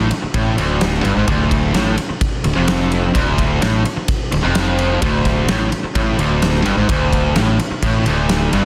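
A fat-snared, punchy big rock drum kit drives this powerful, anthemic hard rock excerpt at 128 BPM in 4/4, entering at 0.1 seconds beneath two overdriven electric guitars, one warm and one bright, picking a low riff on a D5 chord, while a growly fuzz-laden fingered electric bass anchors the bottom in a dense, heavily limited modern mix with light reverb.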